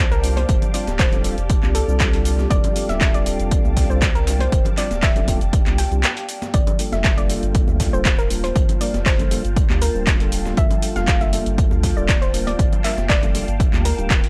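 Moody and late-night, this deep house cut from a longer piece moves at 119 BPM in G minor with a light 16th-note swing, shifting from F69 to Gm9 after a short break between 6.0 and 6.5 seconds. An overdriven electronic kick sits up front, joined by a punchy analog drum machine carrying handclaps, hi-hat and shaker, a very quiet, gritty sampler-style kit with hi-hat, snare and tambourine, and congas tucked into the background. Underneath, a round, deep analog bass with tube saturation pumps with sidechain, while a soft, round pluck plays the melody through chorus and tape echo. A mellow tine electric piano adds clean stabs, a silky string machine holds sustained chords through phaser and ensemble chorus, and a warbling, nostalgic tape-like pad with built-in reverb fills the back with lo-fi texture. The whole piece has a dry, gritty hardware character set in digital ambience.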